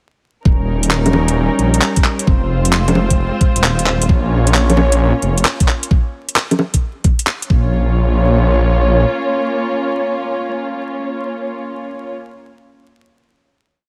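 A short, wistful future garage piece in Bb dorian at 132 BPM opens at 0.5 seconds with everything arriving together: muted, veiled strings holding sustained chords, a menacing detuned saw bass with long gliding notes and a filter swell, and a muffled, knocking two-step kick. A moment later the garage kit joins with metallic hats, handclaps and low bongos in a skittering, shuffled beat swung on the sixteenths. The strings and bass both carry sidechain pumping, while the chords move from Eb7 through Fm to Bbm, drop out briefly, then settle back on Bbm. The drums fall away by about 7.6 seconds, and the piece lands on a final hit at 7.7 seconds. The bass stops at 9.1 seconds, leaving the dark con sordino string ensemble to ring on until 12.1 seconds. Light reverb and a layer of vinyl crackle give the melancholic mood a dusty haze.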